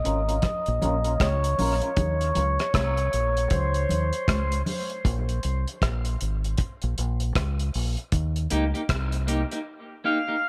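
Meditative and heavy, this dub reggae excerpt at 78 BPM with a swung sixteenth feel sets a reedy, up-front accordion melody and clean picked electric guitar, both filtered and trailed by dub echo, over a round, punchy fingered bass, a cloth-damped thuddy drum kit of tight kick, hi-hat and rim click, and bright, high-tuned congas in the background. It moves from Bbm to Eb5, the accordion stops at 4.6 seconds, and a break follows at 5.0 seconds while the bass carries on until 9.4 seconds, all under a filter sweep and light studio reverb.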